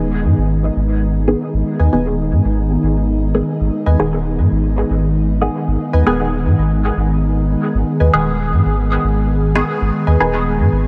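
Lightly reverberant and cavernous, this nocturnal dub techno fragment sets a round, up-front sub bass beneath an airy, breathy pad holding sustained chorused chords, while a phased, evolving chord stab with a sub-octave weight and a muted, background riff of chorused stabs both trail off into dub echo.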